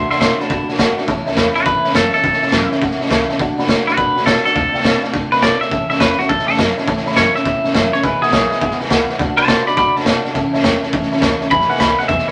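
A clean, twangy electric guitar solo leads from the opening, bright, compressed and up front. Behind it sit a jangly, detuned honky-tonk upright piano, a full-bodied steel-string acoustic guitar with fresh strings, and a dark pizzicato upright bass. A gritty, saturated garage drum kit joins at 0.1 seconds with hi-hat, snare and a boomy kick. This rollicking, retro rockabilly excerpt swings at 207 BPM in 4/4, moving through A major changes that touch D, Dm7 and E. The piano, boxy and vintage in tone, adds a short fill at 0.6 seconds. A moderate club reverb places the band in a club setting.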